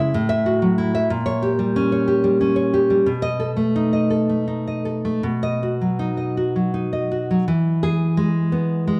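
A dark, full-bodied nylon-string sound sits up front in a moderate recital hall reverb, giving this short passage, cut from a longer romantic piece for solo classical guitar, a nostalgic yet sunny glow. The fingerpicked guitar moves in a rubato 6/8 at roughly 52-64 BPM counted in dotted quarters, ranging from A2 to E5 as it passes through F#m7/A, A#m6, B7 and B. At 7.5 s the music turns to a new section on an E chord before the recording ends at 9.0 s.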